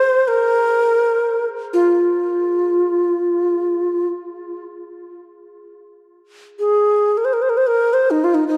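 Flowing in free time, this spacious, haunting stretch of meditative world music is cut from a longer piece and led by a breathy, reedy Native American-style wooden flute that sits up front with vibrato and a soft attack, trailed by a diffuse ambient delay. A very quiet bronze singing bowl, struck with a felt mallet, rings with slow metallic beating only from 0.0 to 2.5 s. A wet hall reverb and small-room ambience give the dark production its sense of space.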